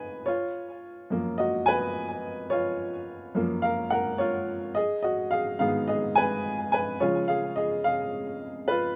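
Warm and anthemic, this brief pop fragment moves at 107 BPM in a straight 4/4, cut from a longer piece. A lone upright piano carries it from start to finish, its woody, boxy tone with short sustain sitting up front and touched by delay as it spans F#2 to G#5 over chords of F#maj7, G#m and C#. Moderate studio reverb surrounds a rough home-demo mix.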